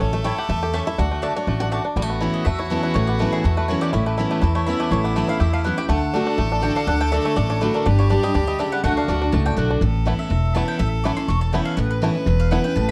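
Bluegrass at a brisk 245 BPM in 4/4 with a light swing, this short cut from a longer piece feels rustic and virtuosic. A twangy, percussive banjo played with fingerpicks carries the melody, while a clear, smooth fiddle with light vibrato adds a close, bowed second line. Full-bodied picked steel-string acoustic guitar with fresh strings provides accompaniment and takes a brief solo in the opening 2.0 seconds, before the mandolin, picked with its woody double strings, steps forward for a solo from 2.0 seconds to the end. Underneath, a pizzicato upright bass sits up front with a woody tone, anchoring chords that move among A, D, Aadd9 and G. The production is dark and warm, with a touch of light reverb.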